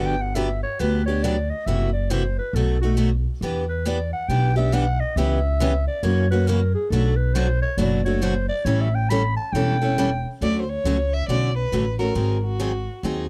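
The recording is dry and close, with little reverb and the intimate feel of a 1970s studio session. It is a lively, swinging fragment of acoustic string swing in the jazz manouche style, set in D major at 137 BPM in 4/4 with a swing feel on the eighth notes. A growling clarinet, raspy and gritty with light vibrato, takes a jazz solo over the opening stretch until about 10.3 seconds, moving through changes such as Gmaj7, B7, Em7 and Bm7. Beneath it, a bright picked steel-string acoustic guitar with fresh strings and audible finger squeak sits up front, and a woody, thumpy pizzicato upright bass on gut strings anchors the low end. At 10.4 seconds a bowed violin enters with the melody, its soft attack, vibrato and expressive portamento giving the closing seconds a singing lift over Dmaj7 and G#7.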